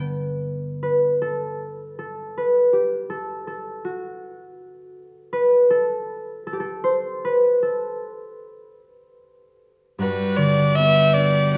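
A moderate recital-hall reverb surrounds this nostalgic, tender Celtic slow air in G major, tuned to A4 = 435 Hz and moving freely in 3/4 at around 71-82 BPM. An up-front concert harp, thumb-plucked and ringing, carries the accompaniment on its own from 0.8 s. At 10.0 s, on a Gmaj7 chord, a single nasal, earthy fiddle takes the bowed melody with light vibrato and a smooth top, while a quieter full pipe organ adds brilliant, baroque-voiced sustained chords with mixtures and a touch of chiff, before this excerpt breaks off at 11.6 s.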